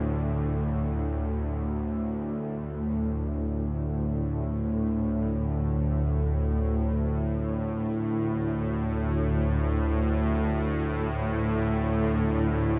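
A lone bowed-like drone, string-like and nasal with a tense sawtooth edge and a hiss of noise, sits bright and up front from 0.0 to 12.8 seconds in this dark, unsettling ambient excerpt in free time, moving between D2 and A2 with slow attacks, long sustains and vibrato inside a huge, wet reverb.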